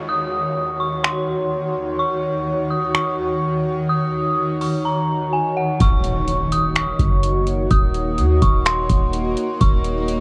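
A hazy, lightly reverberant home cassette recording catches an ethereal cloud-rap hip hop excerpt at 126 BPM in half-time, resting on Ebm7 in Eb dorian. A shimmering pad with chorus and sidechain pumping sits up front from the start, joined by an eerie, warbling FM synth bell melody treated with phaser and tape echo, while a background downlifter opens the piece. A booming analog drum machine with a deep kick, metallic hats and finger snaps enters at 1.0 s and drops out at 4.8 s, returning at 5.8 s as a background impact lands and a soft, round 808-style bass comes in.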